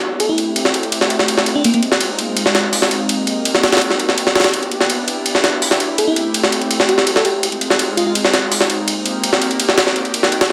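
Heard through a moderate echo chamber, this frenetic, atmospheric stretch of drum and bass and jungle, cut from a longer piece, puts a gritty, compressed, pitched-up sampler-style kit up front, its high-tuned snare, hi-hat and ride cymbal tape-warm and re-recorded in a large room, beneath a lush, detuned unison pad holding slow-blooming, filter-swept minor-seventh chords throughout, while a sparkling, bell-like FM electric piano carries a chorused melody through dub echo from 0.2 and again from 6.0 seconds.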